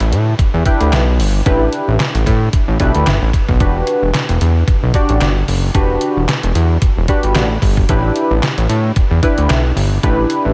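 A light reverb gives this short, late-night cut of early-eighties boogie funk a close, up-front sound built for dancing at 112 BPM in 4/4, with the sixteenths swung at 56%. A fat, thick analog bass carries the low end from E1 to A2, its detuned sawtooth tone shaped by a filter pluck with a fast attack and sustained, evolving body. Beside it sits a detuned 8-bit digital drum machine with a sampler-style character: a thumpy kick, a medium-tuned snare, hi-hat and handclaps, all with the boxy air of being re-recorded in a small room. At 0.7 seconds a retro, glossy polysynth joins in the D4 to D5 range, blending pulse-width-modulated pulse waves and detuned sawtooth through chorus and a filter sweep for a dark, warm accompaniment. The harmony moves from A7sus4 to Em9 at 3.6 seconds and back to A7sus4 at 7.9 seconds.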